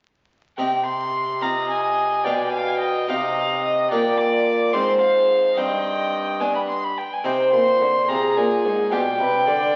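A rich violin carries the melody up front, its gut-string, period-style tone touched with light vibrato and a reedy edge, in this grave, flowing baroque-style sonata movement cut from a longer piece. A second violin, darker and smooth at the top, joins at 1.4 seconds with its own line just below. Beneath them a bright, plucked harpsichord with a single set of strings supplies French-style accompaniment, sitting forward in the middle of the sound. A solo bassoon, warm and classical in manner, holds down the low bass of the continuo. The six-eight passage moves through somber minor harmonies and returns repeatedly to its home chord. The ensemble sounds as if heard through a very old 78 rpm record, with vinyl crackle, dulled highs and the wet reverberation of a recital hall.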